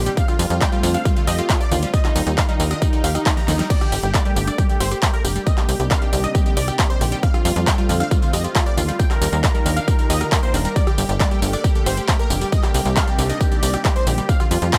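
A punchy, up-front electronic kick anchors this emotional, driving uplifting trance excerpt alongside a tight, nasal sequencer bass, a detuned supersaw stab carrying the melody through digital delay and sidechain pumping, a very quiet, catchy unison lead on a second line, a lush, warbling unison pad holding chords, a round analog pluck playing arpeggios in the background with chorus, phaser and dub echo, and a big-room dance kit with a huge snare, metallic hats and a drum fill at 3.4 seconds, over a repeating progression of F, Ebadd9, Gmadd9 and Cm7.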